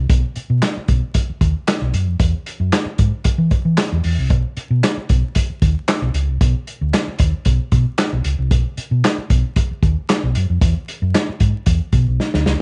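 Playful and funky, this 114 BPM funk excerpt pairs a dark, round hollow-body short-scale electric bass, fingered and amped up front from 0.0 seconds, with a muffled, lo-fi vintage drum kit of punchy kick, medium-tuned snare, hi-hat and handclaps in a small room, all under light reverb and vinyl crackle with a rolled-off top, until a drum fill at 12.2 seconds closes the cut.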